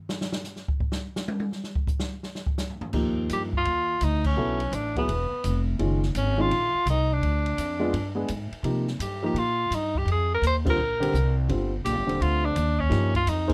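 Sophisticated and playful, this small-group swing and bop jazz piece opens with a drum solo on an acoustic kit with dark cymbals and a boomy kick, before a thumpy, gut-stringed pizzicato upright bass and a warm, woody upright piano join at 2.9 seconds and a clear, vintage tenor saxophone with vibrato takes the melody up front from 3.3 seconds, with band accents punctuating the swing under light reverb and close, detailed miking.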